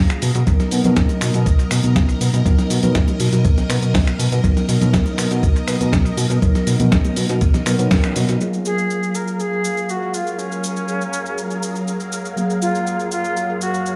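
A straight 4/4 nu-disco groove at 121 BPM in F# major opens this feel-good excerpt, with a gritty, tape-warm sampler-style kit of finger snaps, hi-hat, shaker and snare entering at 0.1 seconds, joined by a thumpy, up-front electronic kick and very quiet, bright congas. A mellow tine electric piano carries the accompaniment through a filter sweep, while a lush vintage string machine holds sustained chords under phaser and ensemble chorus, both breathing with sidechain pumping over a Bmaj7 harmony. A glossy, retro chorused synth bass sits up front until 8.4 seconds, when a band accent at 7.9 seconds gives way to a shift onto F#maj9. An airy silver concert flute then takes the melody with unsteady vibrato and tongued notes, its line trailing dub echo as the string machine moves through its own filter sweep. The mix is echo-heavy with light reverb, giving the groovy, sampled drums a roomy, dusty character.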